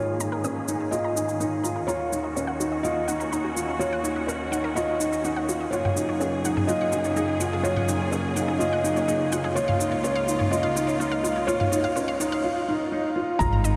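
A soft felt-muted upright piano melody with audible action noise, veiled con sordino strings and a dark, short-sustained grand piano riff open this cinematic, melancholic piano and strings electronica excerpt at 125 BPM, joined at 0.2 seconds by bright, detuned analog pluck arpeggios with sidechain pumping under a filter sweep and by tape-toned electronic shaker and toms, in a mix soaked in huge, dreamy reverb, as the build-up moves through G#sus2, D#m7, F#add9 and C#6 until a round analog bass and a deep kick arrive at 13.4 seconds.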